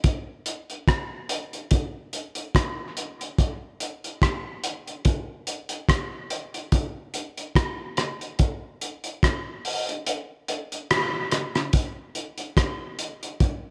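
A cloth-damped, thuddy drum kit of hi-hat, tight kick and rim click carries this spacious, deep reggae excerpt at 72 BPM in 4/4 with a light sixteenth-note swing, its muffled, gritty tone sitting up front in an echo chamber reverb, and the kick drops out from 10.1 to 11.7 seconds.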